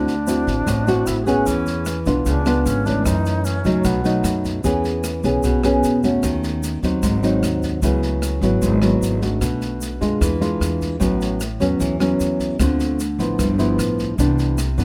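A pure, vibrato-tinged alto flute with a soft attack floats a brief second line over up-front, thumb-plucked nylon-string guitar and woody, thumpy gut-string upright bass before falling silent at 4.4 seconds, leaving this romantic, sophisticated bossa nova at 151 BPM in E major to the classical-toned guitar, with its audible finger squeak, the dark bass, an airy, polished jazz kit with a boomy kick, rim click and medium-tuned snare, and a grainy, close tube shaker in the background, all in a dry, intimate sound as lush chords such as D9, C#7b9, A69 and G13 drift toward Cmaj9 in this section cut from a longer piece.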